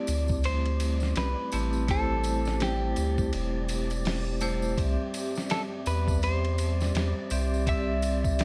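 A dry, close sound with a layer of vinyl crackle frames this dark, brooding trip hop excerpt, moving at 83 BPM in 4/4 with a 16th-note swing in A minor. A round, deep analog bass with tube saturation sits up front, entering at 0.1 s together with a dusty, sampler-style drum kit of thumpy kick, medium-tuned snare, hi-hat and ride, compressed and gritty as if re-recorded in a large room, along with a quiet tambourine. A clean, picked electric guitar carries the melody between G4 and E5, its notes trailing into dub echo. Metallic, ringing vibraphone struck with hard mallets accompanies it, bright and mid-forward, colored by tremolo and vintage 12-bit sampler grit. Behind them, a detuned sawtooth pad with chorus holds slow-blooming chords, and a breathy, wind-like tuned noise texture hovers on D5 in the background. The harmony shifts from Am7 to Cadd9 at 4.8 s.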